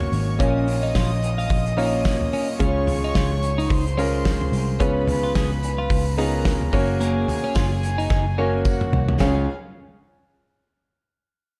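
A clear, up-front concert grand piano opens this uplifting, anthemic piano-driven pop excerpt at 109 BPM with a light 16th-note swing, joined at once by a round, foam-muted vintage electric bass, a loose indie drum kit with a punchy kick and pumping room sound, and a soft-attack violin section bowing a floating sul tasto second line. A bright, compressed twelve-string electric guitar enters at 0.4 seconds with a clean picked riff bathed in spring reverb, and a jingly, band-limited tambourine slips in behind at 0.9 seconds as the chords move from Bbm through Db and Db7 to Gb. A drum fill from 8.1 to 9.2 seconds leads into a new section, all within a dark, warm production with small-room ambience.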